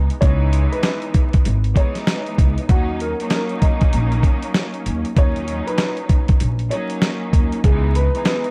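A bowed string section and a woody, pizzicato upright bass open this moody, tough boom-bap hip-hop excerpt at 97 BPM in 4/4, with a 62% swing on the sixteenths. The strings sit low and lush behind a cassette-tape haze with their highs and lows trimmed, while the thumpy bass stays up front. At 0.1 s a dusty sampler-style drum kit arrives with a fat snare, a thumpy kick and hi-hat, compressed and carrying vintage 12-bit grit. From 0.2 s a dark, mellow upright piano carries the melody, intimate and vintage in tone with audible action noise, filtered and trailed by tape echo. The harmony moves from C#m7 to D#m7 and back to C#m7, and the dry, dark production is dusted with vinyl crackle.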